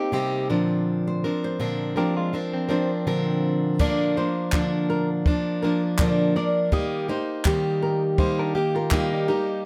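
A picked, plugged-in steel-string acoustic guitar sits up front with a concert body and audible finger squeaks, carrying the accompaniment through this reflective, tender acoustic pop piece at 82 BPM with a light sixteenth-note swing over Cm, Bbadd9 and Eb. A small fingerpicked nylon-string guitar adds high arpeggios, while a compressed, direct-recorded clean electric guitar plays a warm second line that drops out and returns at 8.4 seconds. From 3.8 seconds a dry, natural cocktail drum kit brings a punchy kick, dark crash cymbal and handclaps, all under light reverb in this section cut from a longer piece.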